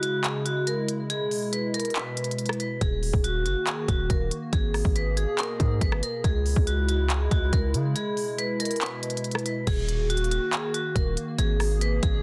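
A ringing, metallic vibraphone struck with hard mallets carries the eerie melody up front, softened by a low-pass filter and trailed by delay, over a hollow, flute-like pad holding mellow chorused chords in Eb phrygian. This dark trap excerpt moves at 140 BPM in a half-time feel, with a crisp, produced electronic kit of hi-hats, handclaps, rim clicks, crash and a hard-clipped kick. A punchy, heavy 808-style bass enters at 2.8 s after the opening break, and a second break arrives at 8.0 s, all set in a dry, dense, heavily limited modern master.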